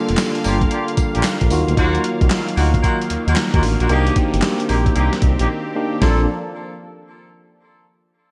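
A gated 1980s digital drum machine sits up front in this bouncy, upbeat new jack swing excerpt, its thumpy kick, gated-reverb snare, handclaps, hi-hat and tambourine carrying a gritty 12-bit sampler edge and the feel of a small room. It swings at 113 BPM in Bb major. Beneath it, a smooth sawtooth-and-triangle synth bass holds the low end with a fast attack. A clean tine electric piano played through built-in speakers handles accompaniment, while an airy, detuned pad with chorus sustains chords across Gm7, Ebmadd9 and Cm7. A mellow, loose horn section with light vibrato and digital delay adds distant stabs from 0.4 seconds, all within a bright, digital production that moves through a short break at 5.5 seconds before landing on Bbmaj7 at 6.0 seconds.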